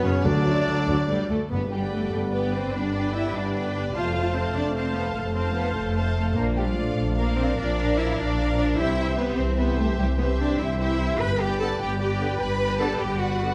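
A moderate scoring-stage reverb gives this triumphant, soaring heroic adventure cue in 12/8, cut from a longer piece, a lush sound. A focused studio violin section carries the melody over background symphonic violins, smooth, even violas, vintage-toned trombone chords, close cellos and rich, up-front double basses, as the harmony moves from D through G, F, Bb and C back to G. A close-miked clarinet, distant trumpet stabs and a very quiet tuba drop out by 1.4 seconds, while hard-mallet timpani enter at 0.3 seconds and stop at 2.1.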